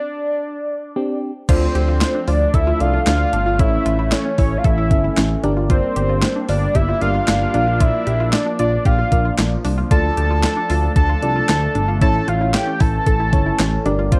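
Dark, lightly reverberant digital ambience frames this nocturnal, cool synth-pop excerpt, where a fat, detuned analog lead sings the melody alone at first before a mellow FM electric piano arrives at 1.0 seconds and, at 1.5 seconds, a smooth gliding synth bass, an overdriven 12-bit drum machine with thumpy kick, snare, hi-hat, handclaps and crash, a sweeping resonant pad and a round, chorused analog pluck playing arpeggios all join in.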